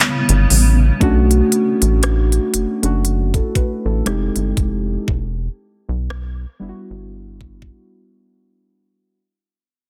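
A cloudy granular pad with built-in reverb and sidechain pumping opens this smooth, dreamy contemporary R&B excerpt at 59 BPM, alongside muted, felt-like synth keys with chorus and an up-front trap kit of knocking kick, crisp hi-hats, handclaps and rim clicks, swung on the sixteenths. The pad drops away at 1.0 seconds, and the rubbery, hollow square bass, which entered at 0.3 seconds, bounces low beneath the intimate keys as the chords move from A7 through Bm7 and Fm9 to Em9 while the piece fades out. The drums stop at 7.9 seconds, leaving the soft keys to linger in light digital ambience on a dense, heavily limited master.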